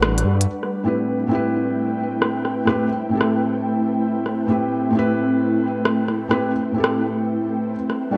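A felt-muted upright piano with delay, an ethereal, warbling pad with ensemble chorus, a menacing detuned saw bass with tube saturation that sounds only until 0.5 s, and a crisp, tape-warm electronic drum kit of hi-hat and rim click with low-pass filtering and gated reverb all open this wistful, melancholic future garage excerpt at 132 BPM in A minor, swung on the 16ths, settling on an A minor seventh chord under a bright 1980s-style digital sheen and moderate plate reverb until the drums stop at 8.0 s.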